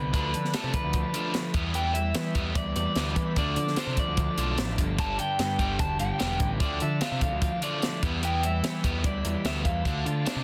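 Opening with a slightly broken-up electric guitar melody through a small old amp, bathed in spring reverb and tape echo, over a biting picked riff, a crunchy background guitar with lush chorus, a growling overdriven bass and a very quiet, bright tonewheel organ holding sustained chords through a slow rotary speaker, this carefree, jangly indie rock excerpt at 148 BPM in 4/4 is driven from 0.1 s by a dry, up-front cocktail kit with a high-tuned snare and punchy kick, moving between Dm, Em and G under a dense, heavily limited modern master.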